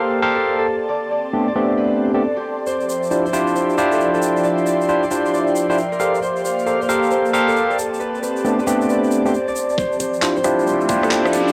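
Heard through a home cassette recording in a small, wet room, this moody, skippy two-step garage excerpt opens on up-front stabs from a bright, barky tine electric piano. Around it sit a ringing, fingerpicked Celtic harp melody roughened by 12-bit sampler grit, tape and analog delay, and two pads: one ethereal and mellow, the other soft and breathy with chorus and sidechain pumping. A grainy, close egg shaker joins at 2.7 seconds, and a build-up begins at 9.8 seconds as a knocking electronic kick and a very quiet, hollow organ-like FM bass arrive, followed by a garage drum kit of handclaps, metallic hi-hats and rim clicks, with an electronic riser entering near the cut.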